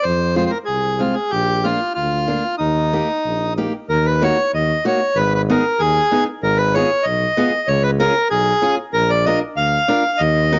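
Festive, jolly alpine dance-band folk in a straight two-beat lilt, cut from a longer piece, where a reedy, hollow accordion carries the melody up front over a mellow tuba bass with light vibrato, a fingerpicked steel-string acoustic guitar joins at 0.4 s, and the tune darkens into a minor-key passage at 3.9 s, all captured in a dry, gritty cassette sound with a touch of small-room reverb.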